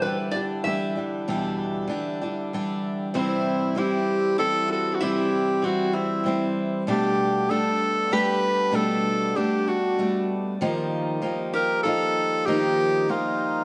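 Acoustic folk in three with a gentle, pastoral mood, cut from a longer piece, opens with a bright, nasal metal-body resonator guitar taking a short slide solo with a steel bar and fingerpicks over an up-front picked steel-string acoustic guitar and a reedy, mellow accordion holding sustained chords in the background, before a warm, classical-style tenor saxophone enters up front with the melody at 3.2 s while the resonator settles into a background second line, all bathed in a wet, spacious studio reverb.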